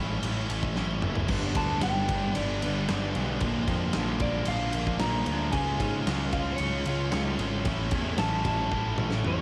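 A twangy, slightly broken-up electric guitar through a small old amp carries a clean solo melody from the start, colored by cassette tape and analog delay, over a tight, bright distorted guitar riff and an up-front fuzz bass that is punchy and overdriven. The huge arena drum kit enters at 0.2 seconds with a punchy kick, medium-tuned snare and rolled-off top, playing fills around 0.8 and 8.7 seconds, while a sludgy overdriven second guitar joins the riff in the background at 1.3 seconds. This cathartic, restless stretch of quiet-loud alternative rock moves at 113 BPM in a straight 4/4 through A, G, Bb and C# chords, with a dry, homemade cassette sound.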